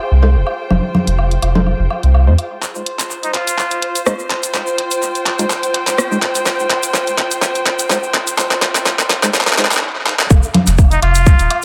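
Cool and hypnotic, this minimal techno cut from a longer piece moves at 125 BPM in 4/4 with a light swing, centred on F minor. It opens on Fm7 with a bubbling, resonant stepped-filter texture and a veiled, con sordino chamber string section, both pumping against the sidechain, while a round, deep analog bass sits up front. A hollow, organ-like percussive stab with chorus, phaser and tape echo hovers in the background, joined by cowbell, woodblock and congas re-recorded in a large room and an overdriven garage drum kit of handclaps, hi-hat and rim click. From 2.6 seconds the harmony settles on F5 for a build-up, as a grainy egg shaker enters, the drums fill and the stab's filter sweeps, and a nasal, breathy muted trumpet with scooped notes briefly takes the solo spot. After a stop at 9.8 seconds, the drop at 10.3 seconds brings back the bass and hand percussion under a tight, overdriven electronic kick, with the trumpet returning in an echo-heavy mix washed in spring reverb.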